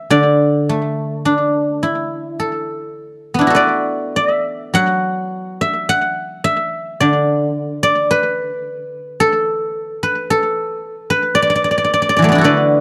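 Flowing and pastoral, this short cut from a longer traditional Chinese solo piece features a fingerpicked acoustic guzheng, ringing and silvery, played freely in rubato up front in a dry, close 1970s-style studio sound with a touch of slapback echo, moving into a new passage at 4.7 seconds.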